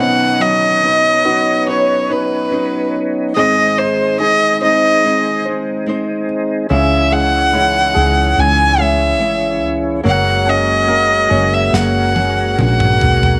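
Light reverb gives a soft glow to this tender, emotional pop ballad fragment in B major, moving at a straight 72 BPM in 4/4. A bowed, nasal violin with vibrato sings the melody up front over a clear, intimate concert grand piano in the background, fingerpicked nylon-string guitar arpeggios, and smooth sustained tonewheel organ chords coloured by chorus vibrato and a slow rotary speaker. At 6.7 seconds a dark, growly fretless electric bass with lush chorus joins, and from 11.7 seconds an airy, polished studio drum kit plays a fill on snare and toms in the background.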